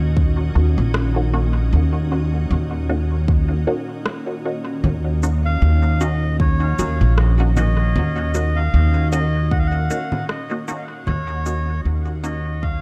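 Dark, warm digital ambience frames this meditative, spacious ambient dub excerpt at 77 BPM in Eb minor, where a chorused organ-like pad holds an Ebm7 chord under muted, phased chord stabs with 12-bit sampler grit, a woody pizzicato upright bass sits up front, a deep layered electronic kick and an electronic rim click with congas and cabasa carry a lightly swung groove, and a reedy, breathy melodica enters at 5.5 s, with the stabs, the hand percussion and the melodica each trailing dub echo before the fade-out from 9.0 s.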